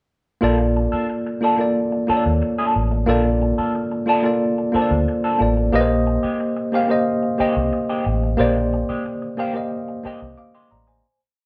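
Lush 1970s-style soul in Bb major at 90 BPM, this short, smooth piece sits on a single verse that moves from Bbmaj7 to Abmaj7 at 5.7 seconds. All three parts come in together at 0.4 seconds, played live in one room with light reverb. A mellow tine electric piano carries the accompaniment with rhythmic chords in a spread voicing, dressed with grace notes and short fills, its worn, slightly out-of-tune tone sitting clean and direct up front. A vintage muted fingered bass plays a warm melodic soul line with muted ghost notes and chromatic approach notes, sounding dark, round and punchy. More quietly, an electric guitar through a small old amp picks a soft sixteenth-note rhythm riff through a wah pedal and spring reverb, slightly broken-up and lo-fi. A fade-out begins at 8.4 seconds and runs to 11.0 seconds.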